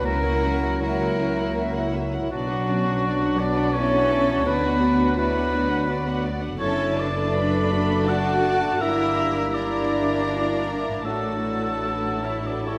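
Solemn and melancholic, this classical passage in 3/4 moves with a rubato feel, cut from a longer piece. A chamber violin section carries the melody with light vibrato and a soft, sul tasto touch, sounding intimate and close. A distant, roomy oboe adds a second line, while a second violin section, a hollow, airy flute and a smooth clarinet weave supporting lines in the background. A mellow bassoon and a viola section fill in the accompaniment, a very quiet French horn section holds sustained chords, and a concert harp rings out soft fingerpicked arpeggios. Dark cello and double bass sections anchor the bass, bowed gently with vibrato. The harmony shifts from minor toward major at 6.6 s, and a wet scoring stage reverb surrounds the ensemble.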